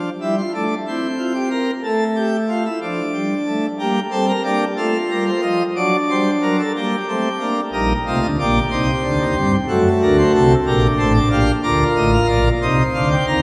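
Bathed in a wet church reverb with a 2.7-second tail, a brilliant, full pipe organ plenum with mixtures and romantic voicing sits up front as the solo voice in this contemplative, serious excerpt from a longer baroque-style four-part fugue in G minor, moving at 61 BPM in a straight 6/8 and spanning A1 to Bb5 as its harmony passes from Dm/F through D/F# to Gm before a second section opens on Eb/Bb at 7.7 seconds and closes on Cm.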